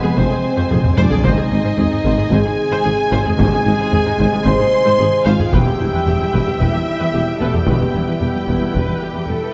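Relentless and brooding, this hybrid orchestral and electronic film cue, cut from a longer piece, sets a distant, clear violin melody and a second violin line over a rich viola accompaniment, with mellow French horns, bright trombones in the background and a shimmering, ethereal ambient pad holding sustained chords, while a tine-like synth pluck traces quiet arpeggios. Beneath them, a very quiet cello section, a focused double bass section and a dark tuba anchor the bass, and a background taiko ensemble played with hard sticks enters at 0.2 seconds and drives a fill between 0.7 and 1.2 seconds. The harmony moves from Fm to G# and then Em, all bathed in a wet scoring stage reverb and a dark, warm production.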